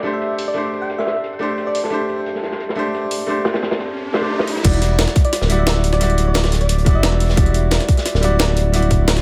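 Rolling straight 4/4 breakbeats at 176 BPM drive this dreamy liquid drum and bass excerpt in E minor, where a bright, brilliant baby grand piano with dub echo sits up front, a round, FM-style struck synth lead with chorus and vibrato floats in the background, a dark, saturated small-room breakbeat kit layers under a gritty, pitched-up sampler-style kit with a crash cymbal, and a background riser from 2.8 s builds to the drop at 4.6 s, where a smooth sawtooth-and-triangle synth bass and a tight, tape-warm electronic kick arrive up front as the harmony moves from D7sus4 to Em9 in an echo-heavy mix with spring reverb.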